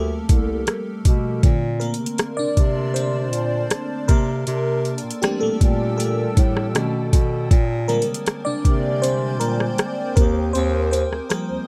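A lush, detuned FM electric piano with a soft pad layer, shimmering with chorus and phaser, carries this smooth, tender contemporary R&B excerpt at 79 BPM in Bb major, over a vibrato-laden, scooping bass clarinet, a tape-warm electronic drum kit of soft kick, metallic hi-hat and rim click, and a blurred granular cloud pad that drifts in at 2.3 seconds, all in a dry, close-sounding mix.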